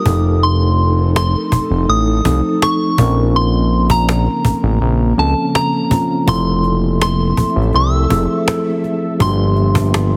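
A fat, detuned analog bass sits up front in this smooth, tender contemporary R&B excerpt at 82 BPM in F major, alongside a snappy, close and dry cajon, a mellow tine electric piano, a soft, warbling FM synth bell melody with chorus and digital delay, and an ethereal pad with ensemble chorus and built-in reverb in the background, moving through F7, Bbmadd9, Fmaj7 and Gm7 under a heavily compressed radio sound with light reverb.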